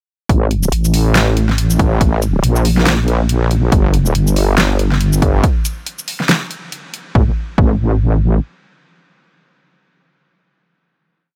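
From 0.3 s a heavy, detuned sawtooth wobble bass with chorus and changing wobble speed drops in alongside a punchy overdriven electronic kick and a fat-snared deep house kit of hats and shaker, driving this meditative, cavernous, dry deep dubstep piece at 140 BPM in a swung half-time 4/4, before the kit falls away at 7.0 s and the bass holds a final note until 8.4 s.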